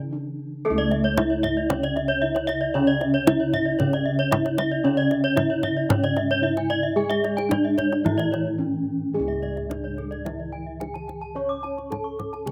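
This Balinese gamelan excerpt is brilliant and hypnotic, moving in a four-beat metre with an uneven pulse. A mellow, soft bronze metallophone struck with padded disc mallets carries the melody with a vintage, band-limited tone. Beneath it, a full, close-miked metallophone played with a wooden mallet supplies the accompaniment, while round, airy bossed gongs anchor the bass with their beating resonance. At 0.6 and 0.8 seconds two bright metallophones played with horn mallets enter in turn to add arpeggios, each with a slapback echo and the second a touch airier, and all the metallophones share the shimmering beats of paired tuning. A deep kendang enters at 0.9 seconds, sitting up front with a close and dry sound, and after a brief break at 8.3 seconds the ensemble moves into a new section. The outdoor recording carries little reverb, keeping the ringing bronze tones crisp and immediate.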